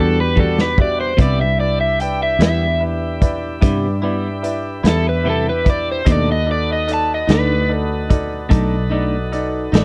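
A dry, close 1970s-style studio sound frames this brooding, smoky slow blues excerpt in 12/8 at 49 BPM, where a crunchy, overdriven electric guitar carries the up-front melody until 7.7 seconds over a gritty, saturated garage drum kit with a punchy kick that enters at 0.4 seconds, a round, foam-muted fingered bass, a brilliant, woody upright piano, a twangy, compressed clean electric guitar with harmonic tremolo in the background, and a smooth tonewheel organ holding chords through a slow rotary speaker, moving from Em9 to Cmaj7 and then B7#9 at 6.1 seconds.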